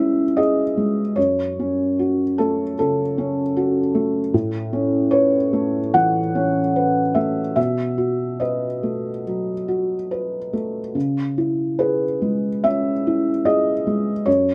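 In a loose, rubato 4/4, this reflective, melancholic neoclassical minimalist piano fragment, cut from a longer piece, features a lone felt-muted upright piano, soft, dark and intimate with thick felt, sitting up front in light reverb for the full 14.5 seconds as it moves from C#m7 through F#m, Aadd9 and B7 before returning to C#m7.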